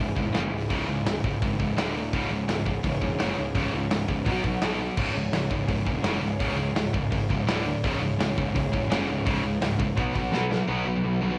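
Cut from a longer piece, this home cassette recording has a light reverb and a gritty tape character, setting a heavy, epic heavy metal passage in C# minor at 168 BPM in straight 4/4. Two bright, high-gain picked guitars drive the riff, with the scooped one up front and the other sitting in the background, over a round, punchy fuzz bass. A roomy, distant acoustic kit with a punchy kick enters at 0.2 seconds and plays until 10.6 seconds, closing with a short fill, while a dark, intimate chamber string section holds soft-attack bowed chords beneath as the harmony circles C#m with brief moves to D5 and B5.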